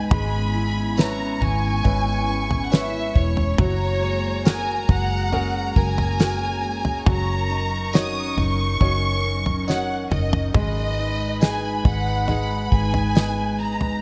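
A lush, vibrato-rich violin section carries the melody of this heartbroken pop ballad at 69 BPM in G# minor, alongside a reedy second violin line with digital delay, brilliant grand piano, an airy chorused pad, full-bodied picked acoustic guitar arpeggios in the background, round foam-muted electric bass, a dry 70s drum kit with a fat snare and a fill at 9.7 seconds, and a very quiet, jingly tambourine, set in bright 1980s-style digital production with light reverb.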